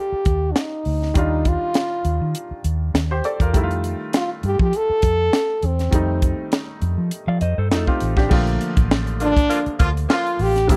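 Lush 1970s-style soul at 101 BPM in Bb major with a gentle 16th-note swing, this romantic piece features a clear, present French horn singing the melody up front over a worn, short-sustained grand piano, a round, punchy foam-muted electric bass and a tight funk drum kit with bright cymbals and a high-tuned snare, moving from Ebmaj9 to F9 before a dark, compressed electric guitar riff with subtle chorus slips in from the background at 7.3 seconds and a mellow jazz-style horn section with light vibrato and octave doubling adds stabs at 9.2 seconds, heard through a close, dry 1970s-style studio sound.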